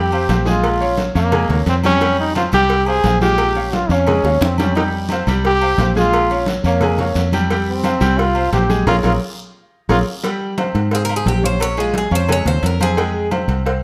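Salsa with a danceable, passionate drive, cut from a longer piece, where a bright, up-front trombone with light vibrato, slapback echo and plate reverb carries the melody over brilliant, short-sustained grand piano, a round foam-muted electric bass, and background congas, low-tuned cowbell and bongos, ringing agogo bells and timbales, and raspy guiro, with drum fills and a band accent leading at 10.2 seconds into a metallic, double-strung Cuban tres solo.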